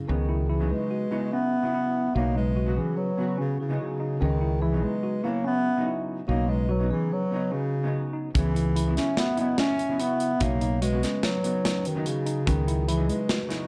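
A mellow bass clarinet carries the melody up front in this progressive instrumental excerpt, its smooth, classical-style tone shaping an intricate, driving mood at 145 BPM in an uneven 5/4 metre. Beneath it, a round, dark fretless electric bass sits equally forward in the low register, while a clean, fingered hollow-body jazz guitar, double-tracked, fills in the accompaniment. A vibraphone played with soft mallets and the motor off adds a ringing, metallic second line coloured by tape echo, and a worn, slightly out-of-tune tine electric piano spins arpeggios in the background. The harmony rocks between C#m7 and B-based chords roughly every two seconds, all in a moderate studio reverb. At 8.4 s a tight drum kit with a medium-tuned snare and rolled-off top enters up front, playing until the cut at about 13.7 s.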